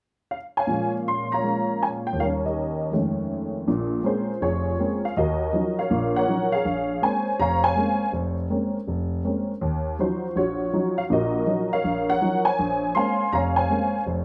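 Smoky and moody, this brief fragment of solo jazz swings at 162 BPM in 4/4. A detuned, jangly honky-tonk upright piano with a woody, vintage character sits up front in a moderate studio reverb, playing from 0.3 to 14.2 seconds across a span from F1 to C6. It moves from Bb dorian through Bbm7, Eb7 and an altered F7, then settles into Bb minor at 3.7 seconds with brooding alternations of Bbm9 and Ebm9.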